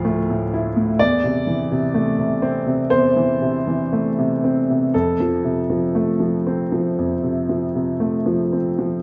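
Intimate and reflective, this short cut from a longer neoclassical minimalist piano piece moves in an unhurried, rubato 4/4. A lone baby grand with a boxy, up-front tone spans from deep bass to the upper middle register, drifting from Dmadd9 through Am/E and settling on F at 4.9 seconds. A moderate recital-hall reverb and a softened top end give the sound a gentle, rounded glow.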